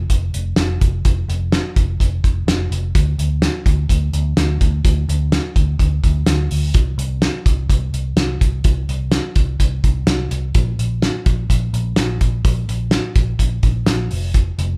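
Jangly indie pop in a straight 4/4 feel, this short excerpt from a longer piece carries a youthful, nostalgic mood. A cloth-damped drum kit sits up front, its thuddy sound built from a fat snare, a tight kick and hi-hat, with a rolled-off top that keeps it soft-edged. Beneath it, a vintage muted electric bass, played with the fingers, holds down the low end between F1 and D2, its tone dark, round and foam-muted through an amp. The drums are the louder of the two parts, while the bass sits a step behind. The pair sound like a band playing live together in one room, wrapped in a light reverb, and both run from the opening moments to the close at about 14.8 seconds.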